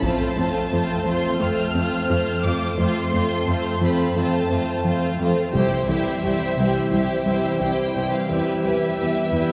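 From the opening, lush bowed strings carry this brooding, futuristic hybrid film cue at 87 BPM, with a vibrato-rich violin melody ranging up to F6 over a second violin line, a softly expressive viola accompaniment, and a smooth, even cello bass. Behind them sit dark, distant French horn chords and a hollow, flute-like chorused pad, while a very quiet woody, warbling wave-folded pluck spins arpeggios through the F, C and E minor harmony. Compressed, saturated taiko hits with heavy sticks sound in the background at 0.0 and again at 5.5 seconds, all bathed in a cavernous church reverb in this fragment of a longer piece.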